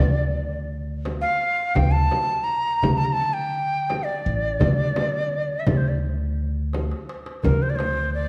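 A straight 4/4 pulse at 84 BPM carries this melancholic, longing passage of an Arabic maqam ensemble in D maqam bayati, cut from a longer piece. A breathy, reedy ney sits up front with the melody, its crisp attack and vibrato set against rolled-off highs as it moves between Bb4 and Bb5. Beneath it, a woody upright bass with gut strings plays pizzicato, thumpy and dark, from A1 to D3. At 1.1 seconds a crisp metal-shell darbuka in a live room and a deep, large frame drum enter together, and the percussion offers a drum fill at 6.7 seconds before falling away at 8.0 seconds. A moderate scoring-stage reverb with a small-room layer gives the ensemble a sense of depth.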